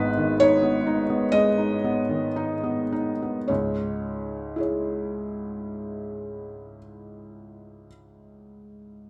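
Neoclassical minimalist piano in C# minor, a melancholic, wistful fragment cut from a longer piece, moving at a rubato 51-66 BPM in 4/4 and slowing down over its first 3.5 seconds. A felt-muted upright piano plays alone from 0.0 to 9.1 seconds, its thin-felt, vintage tone soft, mellow and intimate, sitting up front with light reverb. The harmony rests on G#m before turning to C#m at 3.5 seconds as the opening section gives way to a second.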